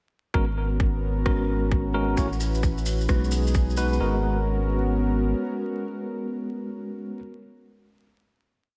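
A worn, slightly out-of-tune tine electric piano sits up front with syncopated chord stabs in drop-2 voicings, trailed by tape echo, in this brief, moody, late-night piece of two-step UK garage. Beneath it, a smooth, detuned sawtooth pad holds mellow sustained chords with chorus and sidechain pumping. A deep, thick sub bass with tube saturation plays a skipping syncopated line until 5.3 seconds. A tight, overdriven electronic kick drives a four-on-the-floor pulse over a swung sixteenth-note feel, joined by an overdriven rim click in the background and by grainy, vintage hand-played maracas. The kick stops at 3.7 seconds, and at 4.0 seconds the breakdown gives way to a final held G#m11 chord on piano and pad. Lush hall reverb soaks the dreamy mix, with vinyl crackle laid across the surface.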